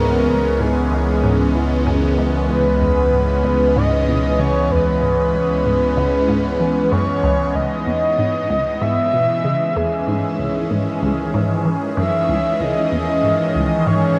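A breathy, flute-like synth lead floats over an evolving wavetable pad from the first moment, carrying a cosmic, hypnotic melody through chorus, shimmer reverb and tape echo in this ambient, sequencer-driven space music at 95 BPM in C# minor, cut from a longer piece. Beneath them a juicy, squelchy blip pluck repeats a low riff through phaser and echo, while a round analog bass holds C#2 until 7.5 seconds, as the harmony moves from C#m7 to C#madd9 at 7.6 seconds. The whole mix is dreamy and soaked in plate reverb, with the lead and the bright, morphing pad sitting up front.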